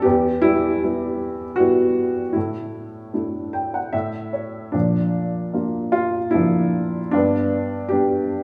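An upright piano carries this brief classical fragment alone, its woody, up-front tone marked by short sustain and sitting across a range from E2 to G5. The mood is warm and peaceful, moving at a lyrical 77 BPM in 3/4 with a freely breathing rubato feel. Harmony drifts from E minor to an A suspended fourth, pauses on an unharmonized moment, then turns to B-flat and settles on G. Between 3.1 and 4.7 seconds the piano adds a small fill that bridges that open gap. The instrument sounds close yet bathed in a recital hall's wet reverb with a 1.5-second decay, layered over a small-room ambience. Lasting 8.4 seconds, the passage is cut from a longer piece.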